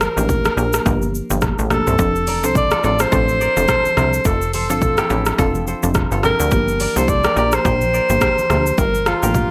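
Sunny and breezy, this afrobeats clip moves at 106 BPM in F major with a swung sixteenth feel, circling between Gm7 and F6. A breathy, whispered alto saxophone carries the melody up front with digital delay, over an overdriven deep house drum kit with a deep kick and metallic hats, a punchy, funky analog bass, and very quiet, bright congas. A woody, mallet-like synth pluck adds chorused accompaniment from 0.2 s, and a crisp, fingerpicked kora riff rings in the background with its own delay from 2.3 s, all set in light reverb.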